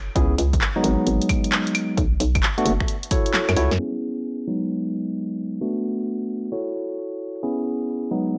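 Swung two-step UK garage at 132 BPM in C# minor, with a dry, punchy electronic kick and an analog drum machine whose snare sits up front amid low-pass-filtered hi-hat, shaker, claves, finger snaps, handclaps and crash cymbal in a small room. A hollow, knocking FM bass with a fast attack bounces under tine electric piano stabs that sound clean and direct through a low-pass filter and analog delay, cycling C#m7, G#m7, Bm7 and F#m7 for a late-night mood. The kick drops out at 3.3 for a drum fill and band accent, and the bass stops at 3.8 as a filter sweep carries the rest of this gritty, saturated hardware recording.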